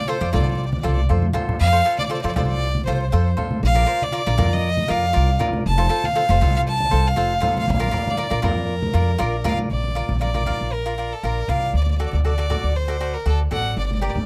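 This calypso passage, cut from a longer piece, has a sunny, bouncy mood in a straight 4/4. A single violin carries the melody up front, its bright tone and airy bowing shaded by a light vibrato and an earthy edge. Beneath it, a crisp, picked acoustic cavaquinho supplies the accompaniment, while a woody, thumpy pizzicato upright bass on steel strings sits prominently in the mix. Low-tuned congas with a thick skin, played with soft hands, sound distant, as if set in a large room, and a brief drum fill arrives at 1.0 seconds. The harmony moves through F6, F, Bbadd9 and Bb before turning to D, with a new section beginning at 9.7 seconds, all captured with close, detailed microphones and little reverb.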